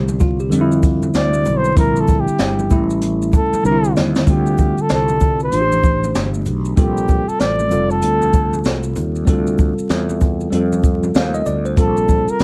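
Under vinyl crackle and light reverb, this nocturnal, cool jazz-hop cut from a longer piece rests on a worn, slightly out-of-tune tine electric piano with light overdrive, a bright, growly fretless bass with lush chorus, ringing close-miked congas and maracas played with soft hands, and an up-front brushed kit with a high-tuned snare and boomy kick, while a breathy, whispered flugelhorn enters at 1.2 seconds for an intimate solo with vibrato before a drum fill at 3.6 seconds leads into the second section at 4.3 seconds.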